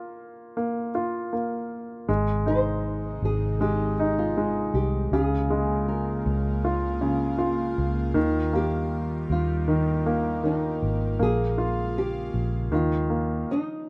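A straight 4/4 pulse at 79 BPM carries this heartfelt, emotional pop ballad in Ab major, taken from a longer piece. From the start, a clear, polished baby grand piano sits up front with the accompaniment in its low and middle register, while a nylon-string guitar with fresh strings and a thumb-plucked classical tone sings the melody between Eb4 and Eb5. At 2.1 seconds a vintage fingered electric bass enters, dark, foam-muted, round and punchy, and at 2.4 seconds an airy, breathy pad fades in beneath with slow-attack sustained chords colored by chorus and phaser. The harmony moves through Bb5, Ab, Db6, Ebadd9 and Bbm7 before settling on Ebsus2. The other parts stop around 13.5 seconds, while the guitar carries on until 13.9 seconds. The mix has the rough, small-room feel of a home demo, with a dull top end.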